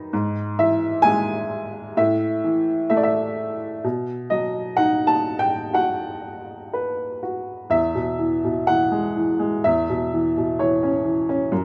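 Heard up front in a moderate recital-hall reverb, a clear, woody upright piano has a boxy tone and short sustain in this cut from a longer lyrical classical piece. Playing alone at a rubato 64 BPM in 4/4, the piano spans E2 to A5 through a dark, reflective passage, moving over E/G#, A5 and B chords. It settles into E major at 7.7 s with Eadd9 and C#m7/E harmonies.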